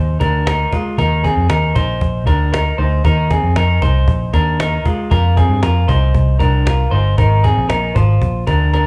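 A straight, steady 4/4 pulse carries this short cut from a longer jangly indie pop piece, its mood nostalgic and youthful. An electric guitar through a small old amp plays arpeggios up front, its tone bright, twangy and slightly broken-up. Beneath it, a vintage muted picked electric bass also sits up front, dark and round from its foam mute. A cajon joins at 0.2 seconds, woody and close with faint snares. The chords move from Abadd9 to Ebsus2, then Fsus2, returning to Abadd9 before landing on Bb. The band plays live together in one room, with a moderate large-studio reverb giving the sound some air.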